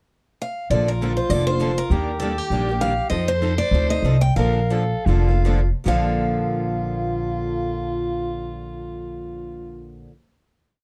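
A picked steel-string acoustic guitar opens with a short pickup at 0.4 s, then the full band of this playful, lively jazz manouche piece in Bb major joins at 0.7 s, swinging in 4/4 somewhere between 140 and 200 BPM. The lead guitar sits up front with a bright, boxy parlour tone, stating a motif-based melody built in sentence-like phrases. Beneath it, a raspy, growling soprano saxophone adds a jazz-style counter-melody with light vibrato and a smooth top. One rhythm guitar plays four to the bar with short chords accented on two and four, while a second sits in the background with fresh strings and audible finger squeak. The upright bass, prominent and thumpy with woody gut-string pizzicato, plays a two-beat root-and-fifth line with walk-ups through Bbmaj7, Ebmaj9 and F7, the tempo slowing from 3.1 s before the ensemble settles on a final chord at 5.9 s, all framed in a dark production with light reverb.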